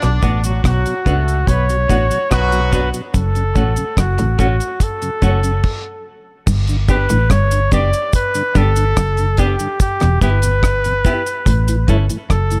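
A straight 4/4 roots reggae groove at 72 BPM sets a meditative, hypnotic mood in this cut from a longer piece, carried by a dry, dark drum kit with a tight kick, rim clicks, hi-hat and crash, and a round, punchy, foam-muted fingered bass sitting up front. A compressed, saturated cabasa adds texture beneath, while a slow-rotating tonewheel organ with chorus vibrato stays clean and in the background. A bright semi-hollow guitar plays a low picked riff, and a clean, dark electric guitar adds accompaniment with tremolo and tape echo from 0.2 seconds. A clear, punchy flugelhorn takes the melody up front from 0.6 seconds, its vibrato trailed by tape echo, while a distant, roomy horn section, which opened the cut, adds a brief second line that ends at 2.9 seconds. The harmony moves from B minor and F-sharp minor to G, E minor and A, and a stop at 5.6 seconds marks the turn into a new section at 6.5 seconds, all set in a small room ambience.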